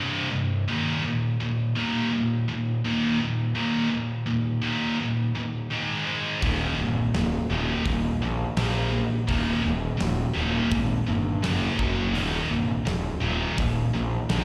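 Heard as a live gig through the venue's PA, the sound carries a recital-hall reverb over a small-room ambience in this epic, relentless heavy metal passage cut from a longer piece. A bright, scooped, high-gain guitar, double-tracked and up front with distortion and slapback echo, plays the riff over chords moving from C5 through Eb5, Ab5 and F#5, alone at first. At 6.4 s a growly, overdriven fuzz bass joins it, along with a dark, smooth acoustic drum kit with a fat snare and punchy kick.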